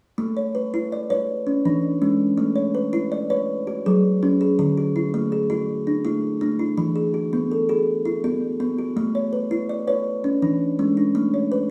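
Set in 12/8 at 110 beats per minute counted in dotted quarters, this short cut of southern African traditional music has a straight, hypnotic, rippling feel. A lone kalimba carries everything from 0.2 to 11.7 seconds, plucked with the fingertips and sitting up front, ranging from D3 to D5. Its tone is woody and mellow, with the hollow resonance of a box body and notes that keep ringing. The tune stays in A major, tuned to A4 = 444 Hz, moving through A, C#m, F#5, D and E before returning to A and C#m and closing on A. A studio reverb with a short half-second tail surrounds the instrument, giving the live, one-room recording a soft, enveloping glow.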